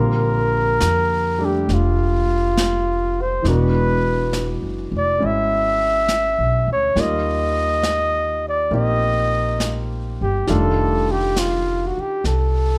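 A late-night, romantic jazz ballad excerpt with a swung feel, where an up-front flugelhorn carries the melody with scooped notes while a clear grand piano accompanies, its long sustain and audible action noise giving an intimate touch. A woody, thumpy upright bass sits close underneath, and a dark, smooth brush kit on snare and hi-hat joins at 0.8 seconds, all within light reverb as the harmony moves through Bb69, E9, Ebadd9 and F13.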